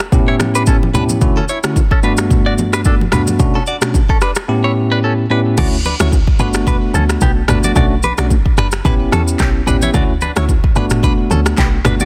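A lightly swung sixteenth-note afrobeats groove rides on an up-front, tape-warm electronic kit with a deep kick, finger snaps, handclaps, rim clicks, shaker, toms and crash, its snare softly clipped, while close acoustic congas and bongos sit in the background. A bell-like tine electric piano cycles through sunny seventh chords as a twangy, compressed, direct-recorded clean guitar picks a riff through phaser and tape echo, and at 5.6 s a punchy, woody FM log drum bass joins with fast-attack, decaying notes. The mood is breezy and joyful, set in digital ambience with a dense, heavily limited modern master, in a passage cut from a longer piece.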